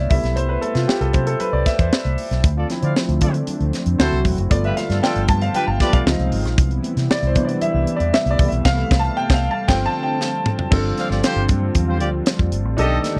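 Bittersweet and slick, this polished 1980s jazz-funk pop excerpt opens on a clear, intimate grand piano with lush chorus and audible action noise, taking a solo over a dark, foam-muted fingered electric bass, a tight funk drum kit with a high-tuned snare, and very quiet ringing congas. A smooth, detuned sawtooth pad with chorus enters at 2.4 seconds, and a distant horn section with light vibrato plays a second line from 2.6 seconds, returning at 11.0 seconds after a band accent and a drum fill. The dry, close studio sound keeps the drums and piano up front, while the chords move through rich extended harmonies such as Fmaj9#11.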